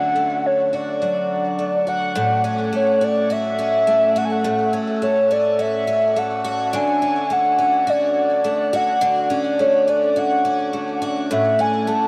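Dream pop at 105 BPM in A major, dreamy and blissful, this excerpt cut from a longer piece pairs a hollow, woody clarinet-like synth lead carrying the melody with a picked twelve-string acoustic guitar playing sparkling, octave-doubled arpeggios, both present from 0.0 to 12.1 seconds. The lead is soft and sustained, colored by chorus, phaser, vibrato and digital delay, while the guitar shimmers under subtle chorus and delay. The harmony moves between Dmaj7 and A6, and a long, wet shimmer reverb bathes the sound in a lush haze.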